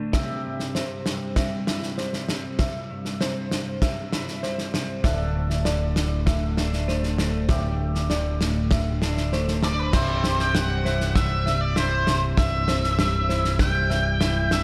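A clean, picked electric guitar opens this hopeful, soaring post-rock passage, its arpeggios coloured by phaser and tape echo, while a loose indie drum kit with a tight kick, medium-tuned snare and crash cymbal sits up front in a straight 4/4. A felt-muted upright piano joins almost at once with soft, intimate arpeggios high in its range, its audible action noise adding texture beneath slapback and tape echo. Deep in the background, a pedal steel guitar played with fingerpicks holds sustained chords through slide and volume swells, compressed and smeared by a lush chorus. At 5.0 seconds a growling picked bass enters, bright and directly amped with overdrive, as the harmony moves from C to Dsus2 before returning to C. From 9.6 seconds a dark octave-fuzz lead guitar carries the melody up front with distortion and tape echo, all set in a moderate hall reverb with small-room ambience that gives the fragment a big arena sound.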